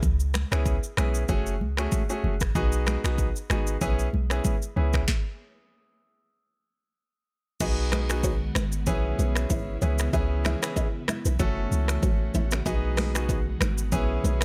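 Afrobeats at 95 BPM with a sunny, joyful swing in B mixolydian, built on a deep, boomy 808-style bass and an up-front electronic drum kit with sharp snare, metallic hats, snaps and shaker, soft-handed congas in the background, and a clear grand piano, all breaking off in a stop at 5.1 seconds before a nylon-string guitar riff with delay enters at 7.6 seconds and an ethereal, warbling pad with ensemble chorus and reverb adds sustained chords from 8.2 seconds in this snippet of a longer piece.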